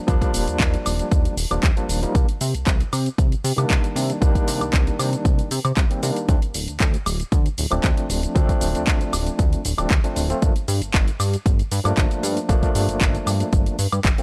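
Nu-disco with a sensual, sleek mood, this 14-second cut from a longer piece moves at 116 BPM in straight 4/4 in G minor, tuned to A4 = 444 Hz. A punchy, overdriven electronic kick sits up front, joined by a layered house kit of handclaps, bright hats, shaker and woodblock, both treated with overdrive and studio reverb. A chorused synth bass, glossy and retro with pulse-width modulation, sawtooth tone and a filter sweep, holds the low end with sidechain pumping and fast-attack sustained notes. Alongside it, an overdriven tine electric piano, barky and gritty through a combo amp, plays accompaniment with fast tremolo, sidechain pumping and analog delay. The harmony moves from Ebmaj7 to Cm9, then Dm7 at 6.3 seconds and Gm9 at 10.4 seconds, all within a dry, gritty, hardware-recorded digital ambience.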